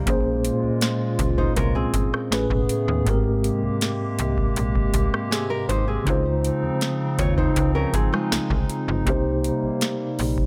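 A booming analog drum machine with a deep kick, tonal snare, metallic hats and rim clicks sets a slow 80 BPM 4/4 groove for this sensual, late-night contemporary R&B excerpt, underpinned by a snappy, slap-like FM bass and carried by an up-front, mellow tine electric piano moving through lush chords from Bbm9 through Abmaj9 and Dbmaj9 to Cm7, while a hollow, flute-like pad with chorus sustains softly beneath and a full-bodied, fingerpicked nylon-string guitar with audible finger squeak and digital delay plays arpeggios until 9.0 s, all in a light reverb.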